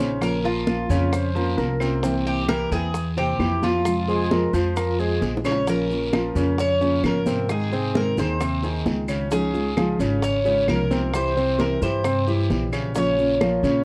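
A straight 4/4 pulse at 132 BPM drives this sultry, nostalgic slice of Cuban son and guajira, cut from a longer piece, with congas, bongos, claves, guiro and maracas entering at 0.2 s. The congas, bongos, claves and maracas sit close and dry in the background, the congas bright and high-tuned, the bongos tight under soft hands and the claves woody, while the guiro sounds raspy and band-limited. Up front, the picked Cuban tres carries the melody with a metallic ring from its doubled strings, over a thumpy, dark pizzicato upright bass. A thumb-plucked nylon-string guitar adds full-bodied accompaniment with audible finger squeak, while a clear, polished concert grand piano spreads arpeggios from deep bass up into its upper register. A distant, airy flute with a soft attack traces a second line from 0.9 to 5.3 s, overlapping a drum fill at 5.2 s that ushers in the next section. The harmony moves from Bbm and C7 toward Ab, Dbadd9 and C before returning to Bbm, all under light reverb and the worn, warbling pitch drift of old cassette tape.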